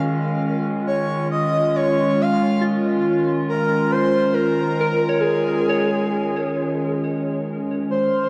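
Moving in a slow, straight three-beat metre, this melancholic, reflective ambient fragment is cut from a longer piece and sits on a single Dbadd9/Eb chord. A warbling, tape-like pad sustains the harmony up front with a dark, nostalgic lo-fi color, its chords swimming in chorus. A soft FM bell traces gentle arpeggios, its pure, decaying tones treated with chorus, phaser and tape echo. From 0.9 seconds a breathy, flute-like synth lead carries the melody up front, softly shaded by phaser, lush chorus and tape echo. At 7.9 seconds a barely audible string-like drone and a faint, ethereal glass harmonica on a high F6 slip in, the harmonica's airy tone beating gently in the background. A long plate reverb and heavy echo wrap the whole mix in a damp, lingering haze.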